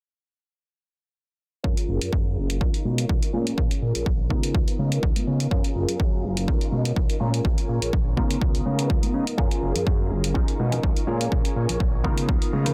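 Feel-good and joyful, this filtered disco house cut moves at 124 BPM in F# major, with a light swing on the sixteenths and a filter sweep running from 1.6 to 12.7 seconds. A punchy, overdriven electronic kick sits up front, joined by a tape-warm electronic hi-hat and, further back, bright tambourine and congas played with hard hands in a small room. A fat, thick analog bass with a detuned, wave-folded sawtooth edge and tube saturation carries the low end, pumping against the kick. Above it, a nasal, funky polysynth comp with chorus, phaser and 12-bit sampler grit cycles through lush chords from F#maj9 through Bmaj9#11 and A#m7 to C#13, while a swirling string machine with ensemble chorus and a slow attack glows in the background. At 9.4 seconds a clean, twangy, direct-recorded electric guitar riff slips in, picked and compressed, adding bright color to a dense, heavily limited modern master.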